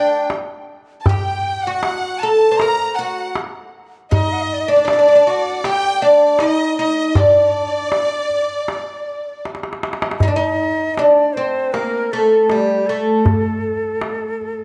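Hypnotic and soulful, this 79 BPM Arabic maqam ensemble piece in D hijaz, cut from a longer work, sets a woody, plectrum-plucked fretless oud up front on the melody, with a breathy, reedy ney and a lush bowed violin section adding second lines until the violins drop out at 9.5 seconds, while a deep clay-shell darbuka played with soft hands fills from 9.5 to 10.2 seconds into a new section, all set in a moderate plate reverb.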